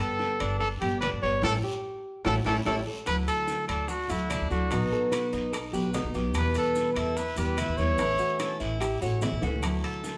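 Warm and sunny, this excerpt of Cuban son and guajira moves at 146 BPM in D major, led by an up-front trumpet singing the melody with light vibrato over a dark, full-bodied fingerpicked steel-string guitar, a metallic double-strung tres playing arpeggios, and a thumpy pizzicato upright bass on gut strings. A classical nylon-string guitar adds a second line from 1.6 seconds, while background percussion of ringing timbales, soft low-tuned bongos, raspy guiro, woody claves and grainy maracas (entering at 3.1 seconds) fills out the groove. The band, playing live in one room with moderate studio reverb, hits an accent from 1.4 to 3.1 seconds capped by a drum fill, with another fill at 9.4 seconds.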